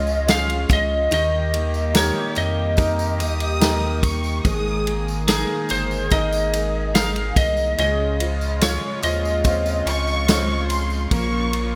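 A bright, 1980s-style digital production sits in a moderate, lush hall reverb on this heartfelt pop ballad excerpt in Ab major, moving at a slow 72 BPM in a straight 4/4. Up front, a twangy, slightly broken-up electric lead guitar carries the melody through a lush chorus, while a clear, polished concert grand piano, also chorused, fills out the accompaniment beneath it. A shimmering, retro pulse-width pad holds sustained chords with a slow attack, and a very quiet, fingerpicked steel-string acoustic guitar adds full-bodied arpeggios. The low end comes from a round, deep sub bass and a punchy, natural country drum kit of kick, snare and ride, with a jingly tambourine set distant in the background. At 3.2 seconds a dark, expressive violin section enters high above with a bowed, vibrato-laden second line, as the chords move from Db and Eb through Absus2 and Dbmaj7 to Bbm.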